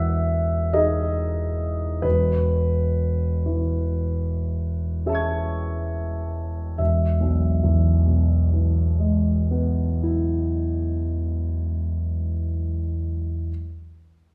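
Serene and luminous, this short excerpt of impressionist classical solo piano drifts in 3/4 with a rubato feel at a slow 32 to 51 BPM in E major, slowing over its first 6.8 seconds. A clear, open concert grand sits up front with a deep bass, spanning E1 to G#6 as it moves from Emaj9 to Amaj9/E before settling on a plain E chord at 6.8 seconds. A wet recital hall reverb, like that of a church or concert hall, lets each chord bloom and hang in the air.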